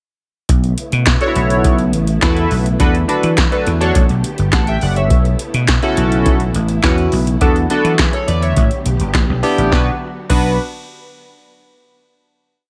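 Early-eighties boogie funk with a slick, late-night mood, built on a deep-kicked, four-on-the-floor analog drum machine beat with punchy clap-layered snare and metallic hats, a growly, amped slap bass playing a fat syncopated line with slides, glossy chorused polysynth chord stabs in rootless voicings that enter at 1.2 seconds with grace notes and short fills, and a silky string machine pad in the background, all moving through suspended ninth chords before settling on a final B minor chord at 9.7 seconds in a dry, up-front mix.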